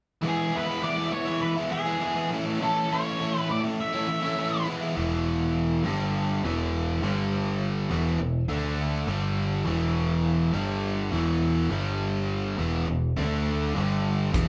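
Classic rock at 102 BPM in a straight 4/4, confident and sunny, with two up-front, warm overdriven electric guitars, one of them biting, playing a picked riff over E and A chords while a dark octave-fuzz lead guitar carries a distorted melody from 0.3 to 4.6 s. At 5.0 s a punchy, direct picked electric bass joins as the riff moves through E5, G5 and D5 power chords. A huge arena drum kit with a punchy kick and hi-hat only arrives at 14.3 s, just as this cut from a longer piece ends, all captured as a band playing live in one room with wet studio reverb.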